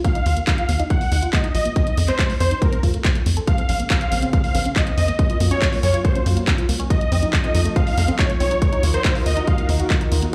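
A straight groove propels this bittersweet uplifting trance excerpt, with a punchy, tape-warm electronic kick up front, a house kit of handclaps and sidechain-pumped hi-hats, and a tight sawtooth sequencer bass entering at 0.3 s. Huge, detuned supersaw chords carry the melody through a low-pass filter and digital delay, while a nasal, tight arpeggiated synth sits in the background under a long filter sweep, chorus and dub echo. A silky, bright string pad with ensemble chorus joins at 3.5 s, and the whole mix sounds played on a big sound system in a bare room with large studio reverb.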